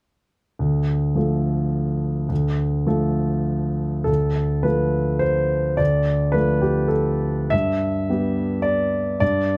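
A lone concert grand piano opens at 0.6 seconds on a D minor chord, setting a melancholic, wistful tone in this short neoclassical minimalist excerpt. The pulse sits around 105 BPM in a gentle three, played with a free, rubato feel in D dorian and tuned slightly below standard pitch at A4 = 436 Hz. The piano sounds warm, intimate and up front, its deep bass and smooth, vintage character reaching from D2 up to E5, with the mechanical noise of its action clearly audible. After an opening passage, a second section begins at 4.1 seconds, and the harmony shifts to a G6 chord at 7.5 seconds before the playing ends at 9.6 seconds. Close, detailed miking and a light reverb keep the instrument near, as if heard from the bench.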